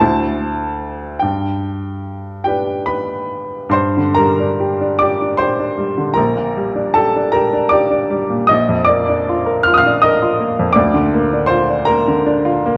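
A slow, rubato lilt in 12/8 at 46-54 BPM carries this nostalgic, dreamy excerpt of a romantic classical nocturne for solo upright piano, whose brilliant, woody tone with short sustain sits up front in a wet scoring-stage reverb, ranging from Bb1 to F6 and shifting from G major into G minor at 3.7 seconds, while worn cassette tape adds a warbling pitch drift throughout.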